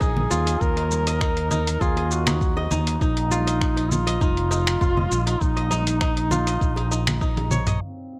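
Warm and mystical, this short organic downtempo cut at 100 BPM sets a smooth, vibrato-laced folk duduk melody over crisp, ringing fingerpicked kora arpeggios and an Ebsus2 to Bbsus4 change, anchored by a dark, round, up-front fretless electric bass with sidechain pumping, a deep electronic kick, a gritty, tape-warm sampler-style kit of finger snaps, hi-hat, shaker and toms under low-pass filtering, faint live-room congas and bongos, a drum fill at 7.2 seconds, and a metallic bronze singing bowl struck with a wooden striker at 7.8 seconds, all in light reverb.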